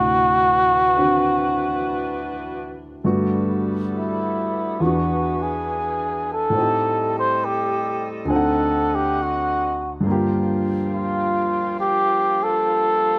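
Melancholic and wistful, this swung jazz ballad fragment, cut from a longer piece, sets a soft, veiled cup-muted trumpet with light vibrato up front over a polished, present baby grand piano and a distant, roomy saxophone section holding tight sustained chords, all under light reverb through close, detailed microphones as the harmony drifts from D13 through Gmaj9 and E7 to Gm9.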